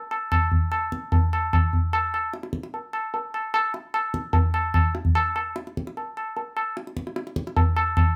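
A ringing, high-tuned tabla sits up front in a moderate studio reverb, its acoustic tone given a compressed, saturated edge. This brief fragment of Indian classical music unfolds in free time with a meditative, longing mood, the tabla playing from 0.1 to 8.1 seconds. Cut from a longer piece, it offers only a glimpse of the drum's voice.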